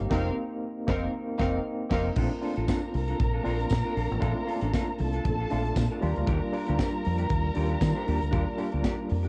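A small-room home recording on cassette frames this celebratory disco excerpt at 117 BPM in Bb major, where a punchy, up-front drum kit and a round, dark dub fingered bass drive beneath a worn, slightly out-of-tune tine electric piano with medium tremolo, a clean hollow-body electric guitar and a bowed string section singing with vibrato and portamento, while the band hits an accent through the first 2.2 seconds and a jingly tambourine sits in the background from 2.7 seconds as the chords move from F7sus4 to Bbmaj7 and Ebmaj7.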